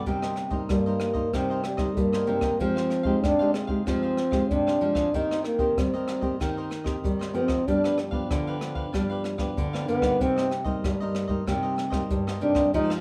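A breathy trombone sits up front in this bittersweet, yearning excerpt of samba and choro, its mellow, whispered tone carrying a light vibrato and a soft attack as it takes a solo from 0.1 seconds through the end. Underneath, at 95 BPM in straight 4/4 and C minor, a fingerpicked nylon-string guitar fills in full-bodied classical accompaniment, while a crisp, warm, picked cavaquinho adds a quieter layer higher up; both carry plate reverb. A second nylon-string guitar, thumb-plucked and dark, holds down the bass. A jazz brush drum kit keeps a smooth pulse with hi-hat, rim click and a boomy kick. The harmony moves from Cm7 through Fm9, Cm7/Eb and G7 before returning to Cm7, and the whole passage has the intimate, roomy feel of a rough home demo recorded in a small space with moderate reverb.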